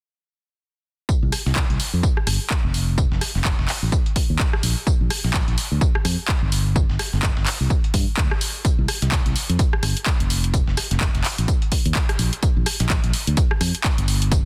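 A swung sixteenth-note groove at 127 BPM in 4/4 drives this joyful, euphoric piano house excerpt: a punchy, tape-warm analog-style electronic kick and a round, direct fingered electric bass with sidechain pumping sit up front from 1.1 and 1.2 seconds, an overdriven, layered house kit adds handclaps, rim clicks and bright hi-hats from 1.3 seconds, and a gritty, compressed sampler-style soul kit of hi-hat, medium-tuned snare and tambourine stays in the background as if re-recorded in a large room, all set in digital ambience within a dense, heavily limited modern master.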